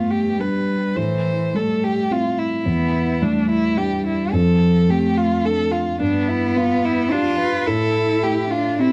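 A rich, up-front solo violin carries the melody with smooth vibrato over a close, airy sul tasto cello second line and a soft, felt-muted upright piano accompaniment in this fragile, longing neoclassical passage in a rubato 3/4, its dark production bathed in moderate large-studio reverb and cut from a longer piece.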